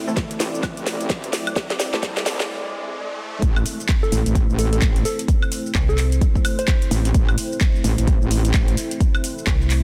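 Gritty and swaggering, this bass house excerpt at 129 BPM in A minor opens with a dark analog pad, an electronic riser and a bold orchestra-hit-like synth stab over a fill from the house drum kit's cracking snare, metallic hats, handclaps, shaker and woodblock, joined almost at once by a punchy up-front kick and a saturated, sidechain-pumped metallic wobble bass. It then drops at 3.4 seconds, with a soft, warbling synth lead with tape echo from 4.0 seconds and brief jabs of digital FM bass, all in a dense, heavily limited modern mix.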